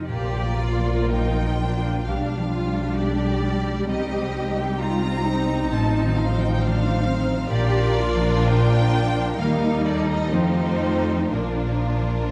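Bowed double basses sit up front in this slow, serene romantic movement for symphony orchestra, their rich, vibrato-laden tone anchoring the bass at 64 BPM in 4/4, with an unhurried rubato feel in Bb major. Above them, a violin section carries the melody with a close, even tone, while a second violin section traces a supporting line with a smooth top. Violas fill in accompaniment from the background, and a lush, focused cello section adds its own bass voice. A concert harp plays ringing, fingerpicked arpeggios behind the strings from the very start at 0.0 seconds. The harmony moves gently from Bb through G7/B, Cm and F7/A, then passes through Eb and F9 before returning to Bb, all set in a dark, warm production with moderate recital hall reverb in this 12.3-second passage cut from a longer piece.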